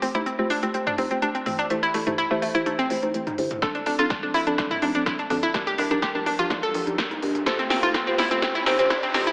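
A straight 4/4 pulse drives this bittersweet, expansive progressive house build-up, cut from a longer piece. An up-front, bright analog pluck plays arpeggios over dark, detuned chord stabs that carry a filter sweep, with chorus, pumping and tape echo on both, while a very quiet, funky wave-folded analog bass sits underneath. Crisp hats and an overdriven snare from a big-room kit mix with congas, rim clicks and toms from a background analog drum machine; a punchy kick joins at 3.6 s as a drum fill begins, and a faint riser enters at 5.7 s, all within a lush hall reverb with a thin, AM-radio-like filtered tone.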